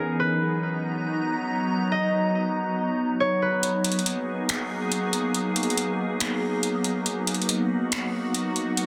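Melancholic and spacious, this atmospheric cloud-rap excerpt in G# minor moves at a half-time 140 BPM as a glassy, ethereal FM pad with ensemble chorus holds slow-blooming chords from Bmaj7 to G#m9 up front, a mellow, ringing fingerpicked concert harp carries a filtered, delayed melody until 5.5 seconds, and from 3.6 seconds a booming analog drum machine recorded in a large room brings finger snaps, metallic hi-hats and a softly clipped snare, all set in a huge ambient reverb with a dense, heavily limited master.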